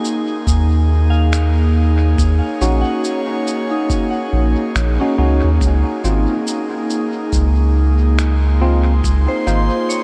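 A hazy, deep ambient dub excerpt at 70 BPM in Eb dorian opens on an airy, breathy pad holding sustained chords with chorus, a soft, warbling FM synth bell tracing arpeggios in the background through phaser and tape echo, and muffled, pitched-down cabasa and finger snaps soaked in dub echo, all moving from Ebm7 to Dbmaj9 at 5.6 seconds over a swung 16th-note feel. At 0.5 seconds a round, dark analog bass with tube saturation sits up front alongside a thumpy, compressed electronic kick that sounds re-recorded in a large room. From 2.6 seconds a clean tine electric piano adds stabs through a combo amp, colored by analog chorus and dub echo, all within a light reverb.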